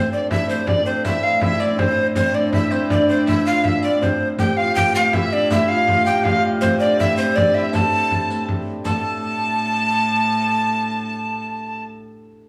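A driving 3/4 pulse at 162 BPM carries this straight-feel medieval dance in A minor, an ancient-sounding passage cut from a longer piece. Up front, a breathy tenor recorder plays the melody with a close-miked, tongued attack, audible chiff and a slightly unsteady straight tone, while a dark, woody fiddle bowed with light vibrato adds a second line from the background. A bright hammered dulcimer adds a shimmering, ringing second line in a lower register, and a clear, reedy viola da gamba holds a fretted gut-string drone on A2. A frame drum struck with hard hands enters at 0.3 seconds and a riq with vintage, band-limited jingles follows at 0.5 seconds, both dropping out at 9.0 seconds, just after the shift into a brief second section at 8.9 seconds. The players sound live together in a small room, wrapped in a wet studio reverb.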